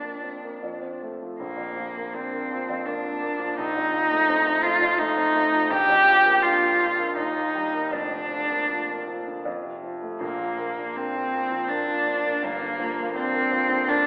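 The recording has a narrow, telephone-like sound, set in the wet, lingering reverb of a concert hall. Within it, a romantic classical duo for cello and grand piano unfolds in Bb major, serene and tender, moving in a rubato 3/4 at roughly 75-86 BPM. A single bowed cello carries the melody up front with a dark, woody tone and vibrato, staying between Bb3 and G4. Beneath it, the concert grand piano supplies a warm accompaniment with deep bass and long, open sustain, reaching down to F1. After a brief opening, the main passage settles in from 1.4 seconds, with harmonies drifting among Bb, F7/Bb, Eb and F before touching Gm7 at 12.4 seconds. Both instruments play throughout this fragment, which is cut from a longer piece.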